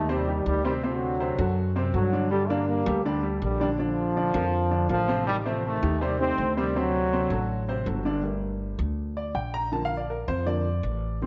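A punchy, tight trombone section with a smooth top carries the melody over intimate upright piano, its action noise audible and its notes short, and thumpy pizzicato gut-string upright bass in this driving, passionate Latin cut in G minor at 162 BPM, moving through Am7b5, D7, Gmadd9 and Bb, until the trombones stop at 7.9 seconds and the piano takes a solo from 8.2 seconds, all set in a moderate echo-chamber reverb with small-room ambience and a darkened, rounded top end.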